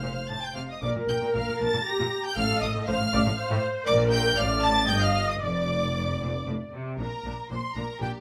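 Lively and cheerful, this short excerpt from a quick classical-period movement for string orchestra moves at 117 BPM in 3/4 with a rubato feel, set in Bb major. A rich, up-front violin section carries the melody high above a focused second violin line, while lush violas fill in the accompaniment and a distant cello section shares the bass line with the double basses, all bowed with vibrato. A moderate large-room reverb surrounds the ensemble, and a brief break in the harmony at 6.5 seconds gives way to a new section on Bb at 7.0 seconds.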